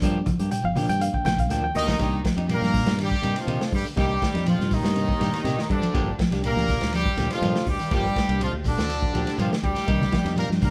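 This funky, driving afrobeat groove in C minor opens with a barky, reedy electric piano taking the lead for the first 2.0 seconds, lightly overdriven and shimmering with fast tremolo through its built-in speakers. Beneath it, a crunchy breakbeat kit with a tight kick, medium-tuned snare, dark cymbals and a rolled-off top sets a straight 122 BPM pulse alongside a punchy fingered bass. Two clean electric guitars fill in quietly, one picking arpeggios and the other adding fingered stabs. A grainy, distant shekere stays in the background, while thick-skinned, low-tuned congas appear briefly at the start and return near the end. At 1.8 seconds a clear, tight horn section enters up front with the melody in octave doubling, supported by a soft-attack trombone section and an edgy, forceful tenor saxophone on second lines, over chords moving between Gm7 and Cm7. The band plays together in one room with moderate studio reverb, and this excerpt is cut from a longer piece.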